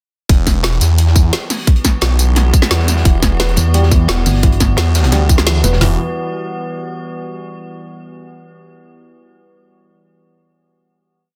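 A dense, heavily limited digital mix carries this mechanical, aggressive dark technical drum and bass piece, where a swirling phased detuned saw bass and two tight electronic kits with woody snares and bright hats, one of them up front, drive the drop from 0.3 seconds, a gritty looped breakbeat with edits sits low behind them, and an eerie metallic inharmonic drone pad hovers with chorus and reverb; a soft felt-muted upright piano enters at 3.1 seconds with a repeating sixteen-step arpeggio through tape echo, and a heavy pulsing pluck wobble bass with changing wobble speed joins at 3.6 seconds before the piece closes on a final chord.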